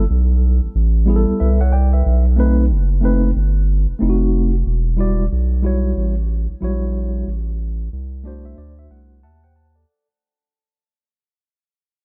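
A deep, saturated sine sub bass sits up front in this cool, nocturnal jazz-hop excerpt at 92 BPM with a swung 16th-note feel, beneath a mellow, clean tine electric piano heard through its built-in speakers in a small room as the chords move from G69 and B7b9 to Emadd9, Am and D7, with the piece fading out from 4.7 seconds while the piano plays a fill from 7.9 seconds.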